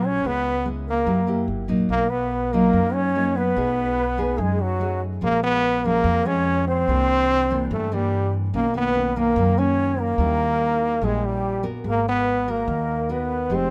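Bossa nova at 145 BPM in 4/4, melancholic and intimate, heard in a dry, close-sounding room in this 13.7-second cut from a longer piece. A bright, punchy trombone carries the melody up front with forceful jazz phrasing, vibrato and scooped notes, while a breathy large flute ensemble with a crisp attack sits in the background on a second line. A full-bodied, fingerpicked nylon-string guitar with audible finger squeak and a woody, thumpy pizzicato upright bass support chords such as Dbm7, Bmaj7, C9 and Eb7b9 before reaching Abm9.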